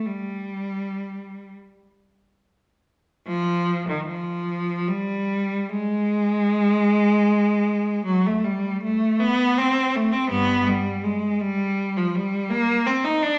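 The rhythm moves freely in 6/8, stretched and held back with expressive rubato so the pulse breathes. This classical fragment for solo cello carries a yearning, lonely mood. A single bowed cello sits up front, its tone rich and focused with a smooth top and a warm vibrato, ranging from G2 up to Eb4. The opening phrase gives way to a new passage at 3.3 seconds, which carries on until the recording breaks off at 13.4 seconds. A wet recital hall reverb surrounds the instrument, lending the solitary line a sense of space.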